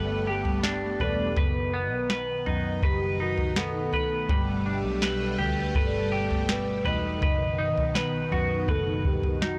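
Ethereal and blissful, this dream pop excerpt floats on a swirling string machine holding sustained chords through ensemble chorus and phaser, while a round, octave-layered synth lead sings the melody through chorus, phaser and tape echo over a Gadd9 to B/F# progression. A bright, twangy clean electric guitar sits up front with arpeggios bathed in lush chorus and tape echo, a dark, foam-muted picked bass anchors the low end, and a soft analog rhythm box with a deep kick, crisp snare and toms enters at 0.5 seconds. From 1.0 to 6.8 seconds a delicate, bell-like celesta rings in the background through tape echo, and the recording carries light reverb with a dry, gritty hardware character.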